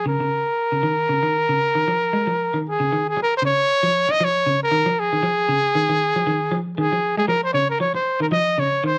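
A breathy trumpet carries the melody up front in this short afrobeat excerpt, its clear, whispered tone marked by vibrato and a soft attack that gives the solo an intimate, pop-style presence. Beneath it, a semi-hollow electric guitar picks clean, hollow-bodied arpeggios in a lower register, also placed close, while the groove moves at 116 BPM in Bb minor with a light swing on the 16ths. The mood is driving and intense, shifting from Bbm to a rootless Bbm7 at 3.2 seconds, all set in a light reverb.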